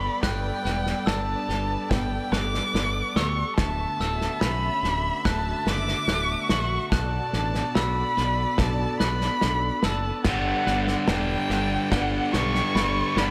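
Light reverb and a small room ambience frame this cinematic, hopeful post-rock passage, cut from a longer piece, which builds at 72 BPM in a straight 4/4. A distant, expressive violin carries the melody up front with vibrato and portamento, its bowed line trailed by digital delay, over a lush, focused studio string section holding sustained chords. In the background, a twangy, compressed twelve-string electric guitar and a sparkling, bell-like glockenspiel struck with hard plastic mallets both play arpeggios through digital delay, while a direct, fingered electric bass sits forward in the mix. A loose indie drum kit comes in at 0.2 seconds, its pumping room sound carrying a tight kick, medium-tuned snare and crash cymbal. At 10.2 seconds an overdriven, picked electric guitar riff arrives up front, as the chords move from Gmaj7 through Dmaj7 and Bm7 back to Gmaj7.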